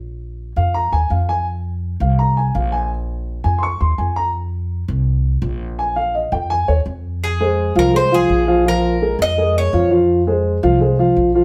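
A dark, mellow, boxy concert grand piano leads this nostalgic, danceable Cuban son and guajira excerpt in F minor at 167 BPM, its arpeggios over Bb5 and F5 shifting to Fm and Bbm7 at 7.2 s as a woody, thumpy pizzicato upright bass with gut strings holds the low end and a metallic, double-strung Cuban tres picks a brief melody from 7.2 to 9.9 s, all set in moderate studio reverb and heard from further back in the room.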